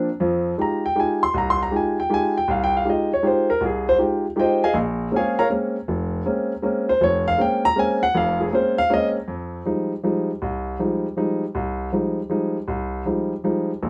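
A solo grand piano opens this jazz excerpt, its tone warm and intimate, sitting up front with audible action noise that lends a natural, close-up presence. The tempo is a brisk 159 BPM in 3/4 time, with a swung eighth-note feel that keeps the waltz moving. Set in F minor, the harmony rests on Fm9 before shifting to Bbm9 at 4.7 seconds and returning to Fm9 at 9.3 seconds, where a new section begins. The piano covers a broad span from deep bass notes up into the high register, and light reverb surrounds it. The mood is spiritual and hypnotic, and the passage is cut from a longer piece, ending at 13.9 seconds.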